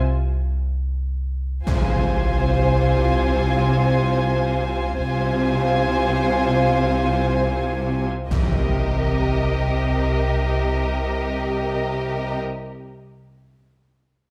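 A moderate recital-hall reverb gives this tense, eerie suspense film cue an enclosed, shadowy space, heard as a passage cut from a longer piece in free time. It opens on a deep, smooth pure sine sub bass droning on C2, sounding alone until 1.7 seconds, when the muted strings enter on an F minor chord over C. Two con sordino violin sections carry the upper parts: a veiled melody between Eb5 and Ab5, and a lush, up-front second line between F4 and C5, both bowed with vibrato and soft attacks. Beneath them a distant chamber cello section holds C3, while a symphonic double bass section sits in the background on C2, doubling the sine drone's depth. Electronic impacts punctuate the cue from 1.7 to 5.0 seconds and return at 8.3 seconds, heightening the sense of looming threat.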